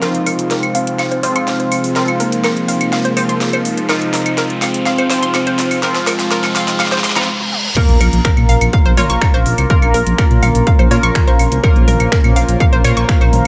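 Melodic techno with a dramatic, driving mood, this cut from a longer piece opens on a build-up over an Fm7 chord. A smooth, expressive synth lead with vibrato carries the melody, while a soft-attack analog pad holds sustained chords and a round, bright analog pluck spins arpeggios, both under filter sweeps, with chorus and sidechain pumping shared across these synths. An edgy sync-sweep polysynth adds nasal stabs with a moving notch and digital delay, and an overdriven deep house kit of claves, snaps, hats, snare, toms and crash plays fills, its fat snare and metallic hats bathed in studio reverb. A riser and reverse cymbal sit in the background, and the lead falls away as the drop lands on Bb minor at 7.8 s with an impact and sub drop. There a heavy, tape-toned electronic kick comes up front and a menacing, detuned saw bass swells in at 7.9 s, saturated and pumping, all within a lush hall reverb.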